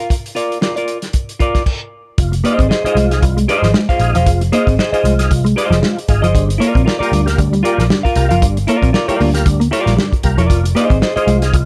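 A swung 16th-note funk groove at 115 BPM in F dorian sets a cool, hypnotic mood in this short cut from a longer piece, opening with an up-front semi-hollow electric guitar with spring reverb and a soul drum kit whose tight kick, medium-tuned snare, hi-hat, dark crash cymbal and pumping room sound come across rolled-off and close, before a brief stop at 1.7 seconds. At 2.2 seconds the band settles over Fm7 and Gm7 chords as a foam-muted, round and punchy picked bass takes the low end, a smooth tonewheel organ adds stabs through chorus vibrato and a slow rotary speaker, and a second clean, mellow guitar enters at 2.3 seconds with a fingered riff. The whole is dressed in light reverb, with the dark tone of both guitars, the first of them hollow-bodied, giving the groove a shadowy, restrained glow.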